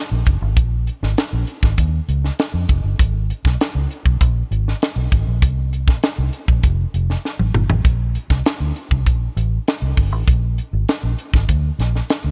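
A dark, round, foam-muted fingered electric bass sits up front in this breezy, glossy 1980s jazz-funk pop fragment at 99 BPM in a straight 4/4, joined almost at once by a dry acoustic funk kit with a high-tuned snare, tight kick, hi-hat and toms that break into a fill at 7.2 seconds, all captured in a polished sound with little reverb.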